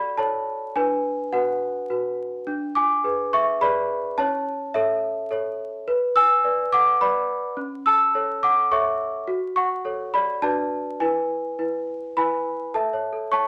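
Tender and dreamy, this classical lullaby for a lone worn celesta moves in a straight 3/4 at 105 BPM in A major, its bell-like, delicate tone sitting up front and sounding slightly out of tune. The harmony drifts from F#m through Bm/D, E7/D and A/C#, then gathers through Bm7/D and E to settle on A at 12.7 seconds. A wet studio reverb and vinyl crackle surround this brief cut from a longer piece, which runs 13.5 seconds.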